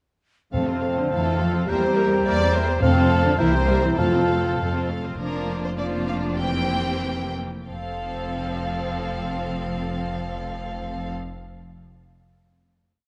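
A quick, graceful and spirited classical-period piece for symphony orchestra in F major and 2/4, moving at 85-108 BPM with a rubato feel. Focused, vibrato-rich first violins carry a rocking two-note melody over a violin counter-melody, a distant viola section, cellos doubling the tune at the octave, and double basses marking the beats. From the opening until about 4.9 seconds, airy flute, clear oboe, a very quiet clarinet and bassoon, mellow horns and hard-mallet timpani strokes also play, before the music slows into a coda and a final F chord at 7.7 seconds, all in a moderate concert hall reverb.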